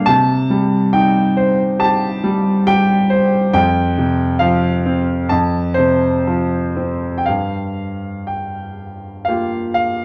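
A clear, smooth grand piano sits up front, playing alone in a reflective, wistful classical passage that spans F2 to A5 at a rubato 59 to 71 BPM in 4/4. The harmony moves from C minor through F5, shifting to G minor 7 at 7.3 seconds as a new section begins. The piano's vintage tone carries a moderate recital hall reverb and the warbling pitch drift of worn old cassette tape, in this short piece cut from a longer work.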